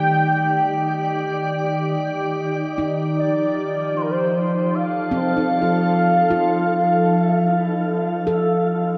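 Ambient and serene at 77 BPM, this reflective excerpt sets a velvety, detuned synth lead carrying the melody with chorus, vibrato and dub echo over a glassy, ethereal FM pad whose slow-attack chords sit up front with ensemble chorus. A mellow, ringing handpan plays meditative arpeggios in a boxy small room, touched by its own dub echo, as the harmony moves from Ebmaj7 to F7 at 3.2 seconds. A wet spring reverb gives the echo-heavy mix a long, drifting tail.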